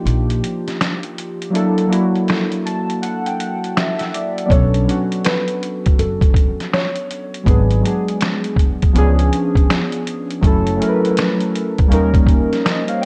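Light studio reverb and a cassette-tape haze give this short cut from a longer lo-fi hip hop piece a nostalgic, reflective air, moving at 81 BPM in 4/4 with swung sixteenths. Warbly synth keys sit up front, their mellow, chorused tone softened by a low-pass filter as they carry the jazzy chord changes. A compressed, pitched-down trip hop sampler-style kit supplies a thumpy kick, a medium-tuned snare, hi-hat and finger snaps, while a woody, dark pizzicato upright bass anchors the low end. At 4.5 seconds a felt-muted upright piano enters with a soft, intimate melody, filtered and touched with tape echo. The piano stops at 8.9 seconds, leaving the keys, bass and drums to carry on.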